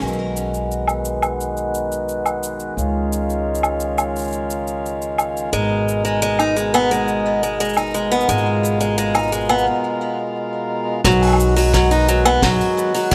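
A boxy, parlour-style picked steel-string acoustic guitar with old strings sits up front from 5.5 seconds, playing delay-touched arpeggios over a reedy, breathing pedal harmonium whose sustained chords carry a vintage 12-bit sampler grit and a low-pass filter sweep. This delicate, autumnal folktronica moves at 87 BPM in a straight 4/4 through B6, C#add9 and G#madd9, with woody pizzicato upright bass and a small-room brushed drum kit of high-tuned snare, hi-hat, cabasa and woodblock, its top rolled off. After a brief break, a tight kick joins at 11.0 seconds as the chords return to B6, all in a moderate concert-hall reverb in this excerpt of a longer piece.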